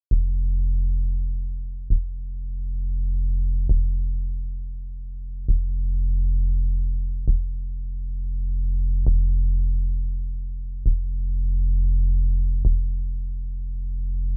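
A dry, low-pass-filtered sound carries this short, uplifting and euphoric trance cut in free time, tuned to A4 = 438 Hz, where a tight, punchy sequencer bass of dark sawtooth and square-wave tone sits up front around F1 from 0.1 to 14.4 seconds, its fast-attack, decaying filter plucks driving and evolving through a filter sweep that spans the whole passage.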